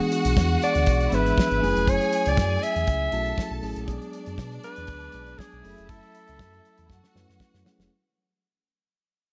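A breathy, up-front alto saxophone carries a jazz-style solo line with scooped notes over a glamorous, driving disco groove at 119 BPM, backed by a mellow tine electric piano, a lush bowed string section with vibrato, a deep sine sub bass doubled at the octave and a dry, damped 70s drum kit with a fat snare and tight kick, moving through E7, F#m9, Bm6 and F#m7 in a light small-room ambience as this fragment of a longer piece fades out and closes on a drum fill at 6.9 seconds.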